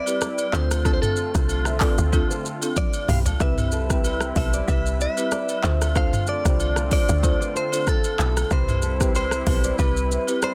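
A dry, dense and heavily limited modern mix opens this breezy, sunny afrobeats excerpt at 94 BPM in 4/4, with a gentle 16th-note swing and a home key of C major resting on a Cmaj7 chord. A bright, clean electric guitar, recorded direct and compressed, carries the picked melody with digital delay, while a rustic folk marimba struck with medium mallets on hardwood bars supplies vintage, band-limited accompaniment. Beneath them a smooth, detuned sawtooth pad holds soft-attack chords through a chorus effect, and a full-bodied nylon-string guitar, thumb-plucked with audible finger squeak, sits in the background playing a riff with its own digital delay. The electronic afro-pop drum kit arrives at 0.1 seconds up front, with a deep kick, metallic hi-hats, handclaps, rim clicks, shaker and toms, soft clipping on the snare, and a drum fill from 2.8 to 3.4 seconds. Distant agogo bells in a large room add acoustic percussion, and from 0.5 seconds a punchy, woody log drum bass with a fast, decaying attack and a mellow noise layer anchors the low end.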